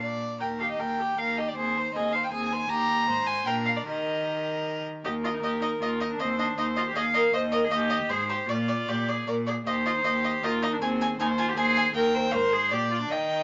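A quick, spirited and graceful classical-period movement for string quartet in Eb major, moving in a brisk 3/4 at 156 BPM and cut from a longer piece. The melody violin, with light vibrato and a reedy gut-string tone, sits up front from 0.4 seconds, while the second violin adds a nasal, airy-bowed line close by and the rich cello anchors the bass. The viola's accompaniment sounds distant, all in a moderate studio reverb, as the music circles through Eb, Ab and Bb harmonies and moves into a new section at 5.0 seconds.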